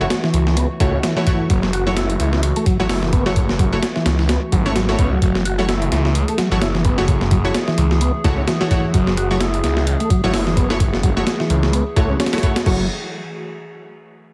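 This funky, swaggering breakbeat clip opens at once on a sustained F#m7 chord, carried by a warbling, nostalgic pad that sits dark and lo-fi in the background with chorus, its own reverb and sidechain pumping, while bold, punchy orchestra-hit-like synth stabs land over it with reverb and tape echo. Up front, a thick, swirling detuned saw bass runs through a phaser, saturated and sustained. Just after, a gritty sampler-style break kit drops in with a thumpy kick, medium-tuned snare, hi-hat and crash in small room ambience, its 16ths carrying a loose swing. A percussive tonewheel organ riff follows at 0.2 seconds, mellow and round with key click, fast rotary speaker, overdrive, 12-bit sampler grit and tape echo. The whole mix has the heavily compressed, light-reverb sheen of a radio sound, and the clip is cut from a longer piece, breaking into a new section at 12.7 seconds.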